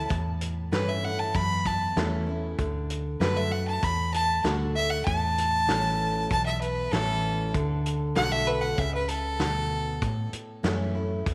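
A moderate plate reverb gives this short honky-tonk and classic country cut a roomy glow, with the fiddle placed up front. A single bowed fiddle carries the melody as a solo, its tone clear and biting with a light vibrato, playing with intense, heartfelt feeling until it drops out at 10.3 seconds. Underneath, a picked dreadnought acoustic guitar fills in the accompaniment with a full-bodied, warm tone, while a vintage foam-muted electric bass, played with the fingers through an amp, adds a dark, round and punchy low end. A vintage acoustic drum kit, recorded in a studio room with a mid-forward sound and a rolled-off top, keeps a straight 4/4 pulse on hi-hat, tight kick and a medium-tuned snare. The chords move back and forth between A and D, giving the passage a down-home feel as it is cut from a longer piece.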